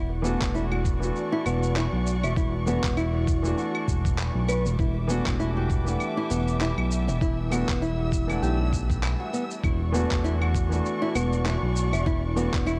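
This short cut from a longer organic downtempo piece opens on veiled, con sordino strings holding sustained chords, a fingerpicked nylon-string guitar spinning arpeggios through a digital delay, and a smooth, nasal synth bass sitting up front with a touch of vibrato. At 99 BPM in a lightly swung 4/4, the mood is hypnotic and mystical, tuned slightly low and moving from Dmaj7/E to Em7 at 4.8 seconds and back again. A felt-muted upright piano slips in at 0.2 seconds with an intimate, thin-felt tone and audible action noise, its accompaniment softened by a low-pass filter and echoed by delay. Gritty, tape-flavoured electronic shaker, handclaps and claves arrive at the same moment, joined at 0.4 seconds by a thumpy, compressed electronic kick, both set in studio reverb. Sidechain pumping breathes through the strings, bass and piano, while the whole mix sits in a dark, warm production with a small room ambience.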